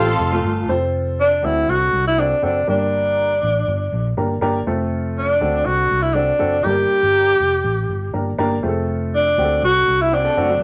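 A straight 4/4 pulse at 121 BPM drives this joyful, danceable soul excerpt, cut from a longer piece and cycling through F, D7 and Gm. A breathy tenor saxophone carries the melody up front between D4 and G4, its whispered, intimate tone marked by vibrato, a soft attack and scooped notes in a pop-style solo voice. Beneath it, a dark, woody upright piano, mellow and slightly detuned, supplies the accompaniment, while a vintage muted fingered electric bass holds the low end with a round, punchy, foam-muted sound. A lush, bowed studio string section adds a clear second line only in the opening 0.7 seconds, joined there by an electric guitar riff through a small old amp, slightly broken-up, lo-fi and compressed with tremolo, which returns at 10.2 seconds. The whole recording sits in a wet studio reverb.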